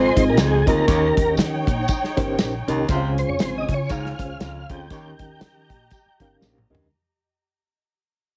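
A smooth tonewheel organ carries the melody up front, its fast rotary speaker and chorus vibrato giving a spinning shimmer to this short, uplifting 1960s-style soul passage at 119 BPM in 4/4 with a swung eighth-note feel. Beneath it, a raspy, gritty baritone saxophone holds a low riff, and a woody, thumpy upright bass plays the bass line on gut strings. A reed electric piano adds worn, slightly out-of-tune accompaniment with fast tremolo through its built-in speakers. A lush bowed string section sits distant with analog delay, and a punchy, tight horn section joins on a second line from 0.9 to 5.1 seconds. The soul drum kit, with a tight kick and rolled-off top, plays alongside a jingly, close tambourine, and a drum fill arrives at 6.4 seconds as the harmony moves through Ab6, Eb7 and Dbmaj7 and the passage fades out under a heavily compressed radio sound with light reverb.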